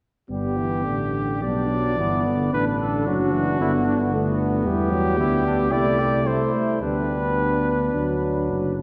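A dark, warm production places this brass quintet in a wet church acoustic with a long reverb tail, giving the brief classical excerpt a stately, glowing character. At 110 BPM in 4/4 and G major, the pulse is uneven and rubato, moving through a chord progression that runs from G through G/B, D/A, Em and Am7/C before settling on D. The warm trumpet carries the melody up front with a light vibrato, joined at 1.4 seconds by the clear flugelhorn on a second line beneath it. A bright trombone with light vibrato and a mellow, smooth-topped French horn sitting in the background fill out the accompaniment. Anchoring the ensemble, the dark tuba holds the bass prominently, its tone smooth at the top and touched with gentle vibrato.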